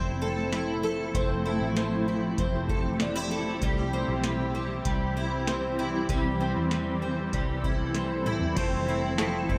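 A moderate plate reverb bathes this short, blissful dream pop fragment, cut from a longer piece, in a dreamy haze. A granular cloud pad holds blurred, detuned chords that slowly evolve beneath a picked twelve-string acoustic guitar, which sits up front playing octave-doubled arpeggios with audible finger squeak, its shimmering tone thickened by ensemble chorus, delay and shimmer reverb. A vintage fingered electric bass adds a dark, round, foam-muted low end, while a booming analog drum machine enters at 0.5 seconds with a deep kick, tonal snare and metallic hats, plus tambourine, toms and cymbals. The harmony moves from Fmaj7 to C, and a drum fill at 7.9 seconds leads back to Fmaj7. At 8.6 seconds a clean, compressed semi-hollow electric guitar joins with accompaniment coloured by harmonic tremolo and analog chorus.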